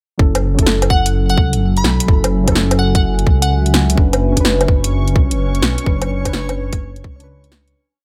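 A short, nocturnal and ghostly future garage piece in F# minor at 127 BPM, its swung 16ths giving a shuffled 4/4 groove. It opens with a tight, muffled two-step kick pushed into overdrive and sitting up front, joined by a deep, rumbling detuned saw bass playing a dub-style line with tube saturation. A garage kit adds a skittering beat of closed hi-hat, low woodblock and a cracking snare. Behind them, muted felt-like keys hold spread chords with syncopated pushes, roughened by 12-bit sampler grit and tape echo, while a warbly, nostalgic tape-like pad sits in the background, moving from F#m7 to Bmadd9/F#. The keys, pad and bass all pump against the sidechain. At 0.9 seconds a glassy, crystalline wavetable pluck plays short high phrases with chorus and tape echo, and at 4.8 seconds a reversed, dreamy texture holds a soft, bright high note in its own reverb as the whole piece fades out from 5.2 seconds, all set in a light digital ambience.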